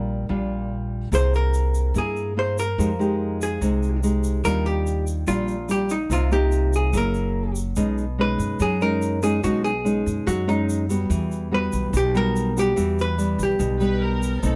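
A relaxed, breezy bossa nova excerpt at 144 BPM in a straight 4/4 opens in Eb major with a dark, clean, compressed hollow-body electric guitar picking the melody up front, over a classical nylon-string guitar plucked with the thumb and a woody, thumpy upright bass with gut strings, all close and detailed with little reverb. A grainy, bright tube shaker joins softly at 1.1 seconds, and at 7.8 seconds the harmony shifts to B major, moving through extended chords such as B69 and Emadd9. At 13.8 seconds a distant studio violin section enters with a soft bowed attack, vibrato and expressive portamento for a brief second line.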